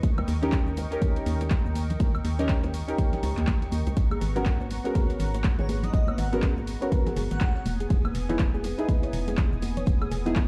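Deep house at 122 BPM in G# minor, this late-night, hypnotic cut from a longer piece rides a swung 16th-note feel over chords moving from D#7 to G#m11 at 4.0 seconds and Emaj7 at 7.7 seconds. An overdriven, deep electronic kick sits up front alongside a hollow, organ-like FM bass with a dark, percussive bite, the bass breathing with the sidechain pumping that also shapes the pad, stabs and pluck. A punchy, tape-warm analog drum machine adds handclaps, hi-hat, shaker and woodblock, while a very quiet, gritty breakbeat sampler-style kit tucks in ride cymbal and a medium-tuned snare, and bright, close bongos and congas played with hard hands sit in the background. A smooth, detuned sawtooth pad with chorus holds sustained chords beneath deep, mellow chord stabs colored by cassette tape and tape echo. From 4.1 seconds a soft, round pluck with analog delay traces arpeggios in the background, and between 5.6 and 7.7 seconds an airy, dreamy lead with vibrato and portamento floats a brief melody. 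The mix carries little reverb, yet it sounds as if played on a big sound system in a bare stone room.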